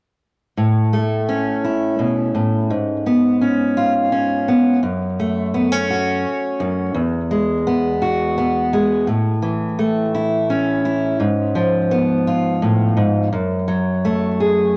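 Set in a triple metre with a straight feel, this folk fragment, cut from a longer piece, unfolds at an unhurried pace and carries a peaceful, pastoral mood. A fingerpicked steel-string acoustic guitar plays alone from 0.6 seconds to 14.8 seconds, placed up front with a boxy body and an audible finger squeak. Its range stretches from the low E2 string up to G#4. The guitar's sound runs through cassette tape and a tape echo, giving it a homespun, worn character that suits the home recording made on cassette. A wet spring reverb and small room ambience surround the performance, while the harmony moves from A through C#7/G#, F#m and Eadd9 before a second passage from 9.1 seconds turns toward G#m6 and settles on F#madd9.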